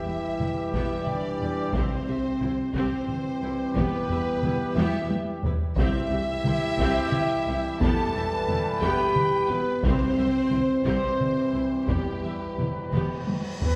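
Heard from further back in a wet scoring-stage space, this triumphant, heroic excerpt of an epic orchestral film cue moves at 59 BPM in 6/8, alternating between E minor and C. Mellow French horns and background trombones hold sustained chords while dark trumpets punch out stabs, and lush vibrato violins carry the melody and a second line over rich violas, with very quiet woody cellos and smooth double basses anchoring the bass. Taiko struck with heavy sticks drives the music with fills at 4.8 s and 12.9 s, close hard-mallet timpani strike on C, a huge bright cymbal swell rises at the end, and a pure, distant flute group slips in at 13.6 s.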